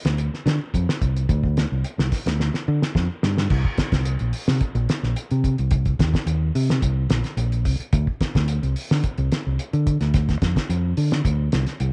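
A light reverb and a small-room sound frame this hypnotic, intense afrobeat fragment in C minor at 108 BPM, cut from a longer piece. A cloth-damped, thuddy acoustic kit with a fat snare, tight kick, hi-hat and dark, rolled-off crash cymbals sits up front beside a round, fingered electric bass. A drum fill from 2.4 to 3.5 seconds leads into a new section that carries the groove to the end.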